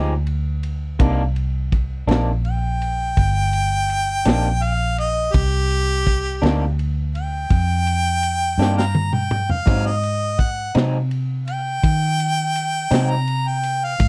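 This slow blues in C minor moves at 55 BPM in a straight 12/8, with a soulful, mournful mood, and it is cut from a longer piece. A vintage muted fingered electric bass sounds round and punchy up front, while an electric guitar through a small old amp plays dark, slightly broken-up, lo-fi accompaniment shimmering with harmonic tremolo. A crunchy breakbeat drum kit enters at 0.3 s with a tight kick, medium-tuned snare, toms and a dark ride cymbal, its saturated, gritty tone rolled off at the top, and it plays a fill from 8.6 to 9.7 s. The harmonica comes in at 2.5 s and takes a jazz-style solo, bright and close-miked with light vibrato, tongue slaps, scooped notes and a slapback echo. The harmony moves from Fm9 to Cm9 and arrives on Ab7 at 9.7 s. The sound is a dry, close 1970s-style studio recording with little reverb.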